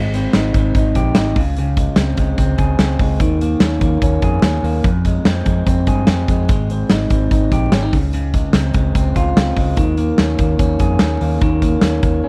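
Picked electric guitar arpeggios through a small old amp, slightly broken-up, compressed and trailed by tape echo, open this youthful, nostalgic jangly indie pop fragment in Ab major at 146 BPM alongside a dark, round, foam-muted fingered bass, as a big-room rock kit with a punchy kick, medium-tuned snare and hi-hat sits up front over a dry, close 1970s-style sound with vinyl crackle while the chords move from Abmaj7 through Fm to Dbmaj7 and Eb7sus4.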